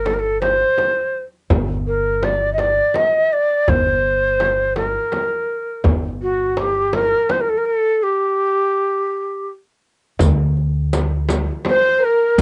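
Muffled home-cassette sound in a small booth frames this festive Persian modal ensemble fragment in 6/8, where a breathy, reedy ney with vibrato leads up front over woody pizzicato upright bass, a deep frame drum and a tight tombak in the background, with a riq's bright jingles entering at 10.2 s and a dark, bowed violin section joining at 11.7 s.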